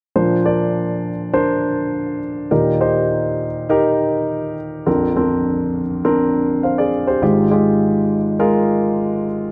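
A baby grand piano carries this short pop fragment on its own, sounding present and polished and placed up front from 0.2 s to 9.5 s. It plays an accompaniment part that ranges from Ab1 up to F5, moving through Bbadd9, Eb, Bbadd9 again, and then Fmadd9/Ab. The tempo sits at 102 BPM in a straight 4/4, and the instrument is tuned slightly low, with A4 at 439 Hz. A moderate plate reverb with a 2.3-second tail surrounds the piano, and the overall production leans dark. The mood is uplifting and warm, like a brief glimpse cut from a longer piece.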